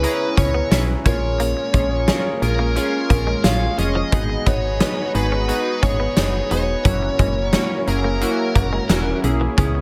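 Set in a light, small-room reverb, this dramatic, moody 1980s-style pop excerpt moves at 88 BPM in 4/4, with a big rock drum kit driving it through gated reverb, its punchy kick and medium-tuned snare sitting over a round, up-front FM bass. A smooth overdriven lead guitar carries the melody until 9.2 s, while glossy chorused retro synth keys, a lush detuned unison pad held in the background, and a very quiet, twangy direct-recorded clean electric guitar riff fill out the arrangement. The harmony moves through C#m7, A#m7, G#m7 and F#7.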